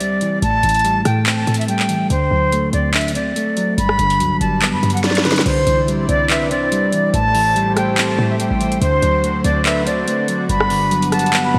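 Hip hop and trap at 143 BPM in a half-time feel, this short cut from a longer piece in G major feels wistful and triumphant as a bright, reedy jazz flute carries the melody over a dark, clean electric guitar with subtle chorus, a punchy, tight 808-style bass and a trap kit with a sharp snare, metallic hats, handclaps and rim clicks. After a drum fill from 5.0 to 5.5 seconds, a breathy, flute-like synth lead with vibrato and a smooth, detuned analog pad with tremolo enter from the background, the chords cycling through Am7, D7 and Gmaj7 with a turn to Cadd9. The mix has a lush hall reverb, bright 1980s-style digital production and a layer of vinyl crackle.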